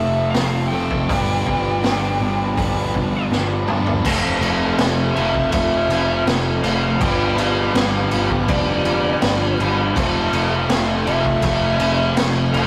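Hazy and wistful, this short cut from a longer shoegaze and dream pop track moves at an unhurried 81 BPM in a straight 4/4, drifting between F and G7 before settling into Fmaj7 and G7. A fuzz-drenched, compressed lead guitar carries the melody high above a dense bed of three overdriven rhythm guitars: one dark and biting, one plainly overdriven, and a bright, double-tracked garage part, all riffing in the background. Underneath, a growling overdriven electric bass holds down the low end, while a very quiet, boxy twelve-string acoustic picks octave-doubled arpeggios that add a faint shimmer. The gritty, saturated drum kit sits up front with a high-tuned snare and a boomy kick, entering at 0.3 seconds and rolling into a fill just before 4.1 seconds. At that point a very quiet string machine enters with slow-attack, sustained, vintage sawtooth violin chords, thickening the haze. The whole piece has the rough feel of a rehearsal-room recording, with a short, wet room reverb and warm saturation.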